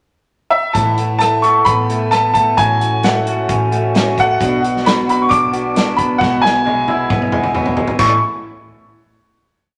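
Nostalgic and open-road in spirit, this short folk rock and heartland rock piece moves at 133 BPM in a straight 4/4 in A major, with a large, wet studio reverb around it. A bright baby grand piano sits up front with a brilliant, long-sustaining hook melody, entering at 0.5 seconds on a brief pickup before the verse begins at 0.7 seconds. Beneath it, a boxy steel-string acoustic guitar strums open chord shapes in the background, while an electric guitar through a small old amp plays slightly broken-up, lo-fi picked arpeggios. A natural country drum kit with dark cymbals, a medium-tuned snare and a punchy kick drives a rock groove, and a round, hollow-body electric bass adds a dotted figure in the low register. The harmony moves from Asus2 through F#m/A and Bm to Eadd9/B, where a drum fill leads into a final A chord at 8.0 seconds that closes the piece.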